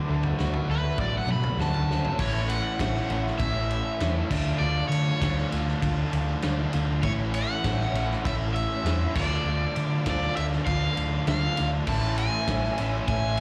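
Jangly and carefree, this short indie rock clip moves at 99 BPM in a straight 4/4 in A major, with the sound of a live gig carried through the venue's PA into a club space. Two overdriven electric guitars drive picked riffs from the first moment, one tucked into the background with a compressed, warm tone coloured by phaser and slapback echo, the other bright under lush chorus and slapback. An overdriven guitar solo opens the clip, and a drum fill at 1.9 seconds leads into the main stretch at 2.2 seconds, where the harmony shifts between Amaj7 and Dm. A loose indie drum kit with a punchy kick, medium-tuned snare, crash, ride and toms sounds gritty and rolled-off on top, while a hollow-body short-scale bass sits up front with a dark, round, fingered tone. From 0.7 seconds an overdriven semi-hollow guitar carries the melody in a high register, picked and bright with slapback echo and digital delay. 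Beneath it all, a very quiet vintage combo organ holds buzzy, overdriven chords with heavy vibrato.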